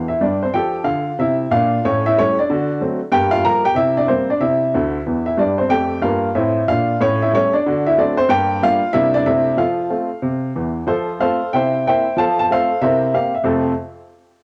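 A home cassette recording with a vintage character, set in a small room with a moderate spring reverb that lends the piano a gentle halo. This is a brief, swinging and exuberant passage of stride jazz, cut from a longer piece, in F major at a brisk 186 BPM in 4/4 with a swing feel on the eighth notes. A lone upright piano carries everything, sitting up front with a woody, smooth tone and short sustain, ranging from D2 up to Bb5. It opens with a quick fill and plays another at 4.7 seconds, moving through a progression of F, A7, D7, Gm7 and C7 that cycles around before settling on a C69 and returning home. From 10.9 seconds a new passage alternates between C7 and F, landing on F as the clip closes at 13.7 seconds.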